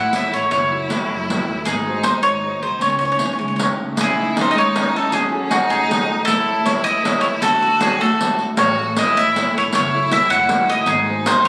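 A bright, picked bowl-back mandolin with its doubled strings sits up front, carrying a passionate, wistful Italian serenade in 6/8 at 104 BPM in C# harmonic minor, while a clear, smooth violin with vibrato traces a second line beneath it and a small nylon-string guitar fingerpicks the accompaniment. A woody, dark pizzicato upright bass plays until 3.9 seconds and returns at 8.6 seconds, and a distant riq adds jingles played with soft hands. Captured on a phone in a reverberant recital hall with a 1.7-second decay, compression and added club reverb, this short cut from a longer piece moves through chords such as F#m7, G#7 and Dadd9.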